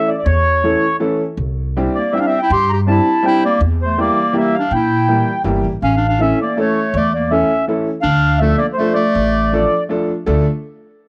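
A brisk 3/4 lilt at 162 BPM drives this whirling, nostalgic musette waltz in D minor, a fragment cut from a longer piece. A reedy, dark accordion with slow beating and a cassette-tape tint carries the melody up front over a woody, slightly detuned upright piano with long sustain and a pizzicato upright bass whose steel strings pick up transformer saturation. A bright, classical-style clarinet enters at 2.0 s with a second line, all set in a small room with a homemade cassette character.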